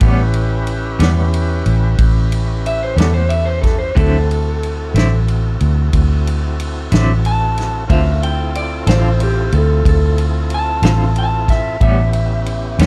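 A swaggering, gritty slow blues in a rolling 12/8 opens with four parts together: a clean electric guitar with picked, gently pulsing tremolo takes the solo, set over thick, lightly overdriven tonewheel organ chords turning through a slow rotary speaker. Underneath, a vintage foam-muted fingered bass sits up front with a round, dark, amped tone, while a natural country drum kit in a small room supplies punchy kick, a medium-tuned snare and shadowy ride cymbal. At 2.7 seconds a second electric guitar arrives through a small old amp, its bright, twangy, slightly broken-up picking carrying a tape echo high above the band. The harmony moves from A9 to D9, then to Dm7 before returning to A9. The production is dark and warm with little reverb, and this short passage is cut from a longer piece.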